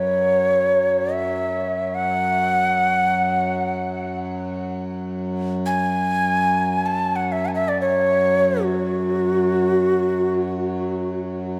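Drenched in the two-second tail of a concert hall, this excerpt of meditative world music drifts in free time, tuned to A4 = 438 Hz, with a spacious, contemplative calm. A breathy Native American-style cedar flute carries the melody up front, its woody tone close-miked with a crisp chiff on each attack, expressive vibrato, and a halo of shimmer reverb and tape echo. Beneath it, a hand-pumped harmonium holds a reedy, nasal drone that seems to breathe as it sustains from the first moment until 11.6 seconds.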